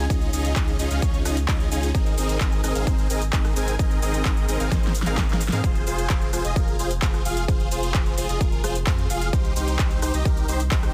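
Festival progressive house with a powerful, anthemic mood, this short cut from a longer track moves in a straight pulse. A huge, detuned supersaw carries the riff from the first moment, thick and up front, its sustained unison tone pumping against the sidechain and trailing a delay, with a moving notch colouring its edge. Beneath it a deep, saturated sub bass holds the low end, its tube-driven warmth also breathing with the sidechain pump. A punchy, overdriven electronic kick sits forward in the mix. The big-room kit adds a huge snare, metallic hats, handclaps, rim clicks and shaker, and a drum fill runs between 4.7 and 5.6 seconds, while the harmony moves from Dbadd9 and Abadd9 into Fm and then Cm. The master is dense and heavily limited, with little reverb, keeping the sound close and hard-hitting.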